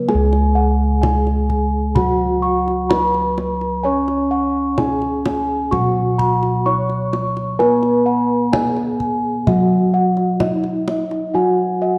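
Bronze metallophones and deep bossed gongs open this serene, shimmering Javanese gamelan excerpt in C# slendro at a slow 64 BPM in 4/4. The metallophones play a mellow melody line with paired tuning and shimmering beats, a dark, smooth accompaniment below it, and airy arpeggios high above, all struck with padded disc mallets. Round, beating gongs carry the bass across a broad span and are joined from 0.1 s by a soft higher gong part in the arpeggio register, while a tight, hard-handed kendang plays until 11.2 s, all set in a moderate stage reverb and colored by worn, warbling cassette tape with pitch drift.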